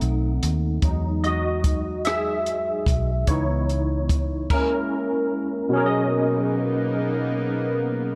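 Slow six-eight R&B in B major at 49 BPM, intimate and warm, cut from a longer piece. A barky tine electric piano, bright and lightly overdriven through a combo amp with ensemble chorus, takes a solo up front over a round, foam-muted fingered electric bass and a compact cocktail drum kit of crash, hi-hat, punchy kick and rim click with a dark, rolled-off top, as the chords move from B7b9 through Emaj7 and C#m9. The bass and drums stop by 4.7 seconds, and at 5.7 seconds a lush, airy detuned unison pad with chorus enters alongside the piano to hold a Bmaj13, all set in light reverb.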